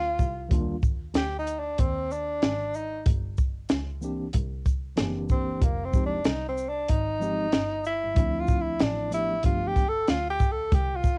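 Over a swung sixteenth-note hip-hop groove from a compact, dry cocktail drum kit with a punchy kick and high-tuned snare sitting up front, this smoky, mellow jazz-hop excerpt features a breathy tenor saxophone soloing throughout with subtone, vibrato and scooped notes, colored by cassette-tape grit and plate reverb, supported by a dark, veiled double bass bowed con sordino with boxy transformer saturation and a clean tine electric piano heard through its built-in speakers that enters at 0.5 seconds and drops out at 9.8 seconds, set in a moderate booth ambience on a home cassette recording.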